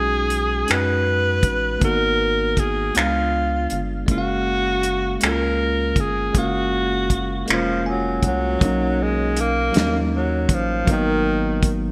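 Sensual and intimate, this slow six-eight R&B excerpt carries a breathy tenor saxophone melody, whispered and up front with vibrato and scooped notes, over bell-like tine electric piano chords that move from B69 through G#m7 and C#7b9 to F#maj9 before a shift to Bmaj9 at 8.6 seconds. A rubbery, hollow square bass holds the low end while a damped 70s drum kit with finger snaps, hi-hat, tight kick and snare, treated with gated reverb, enters at 0.3 seconds. The electric piano plays a fill from 7.5 seconds, and a plate reverb and bright 1980s-style digital sheen frame the whole.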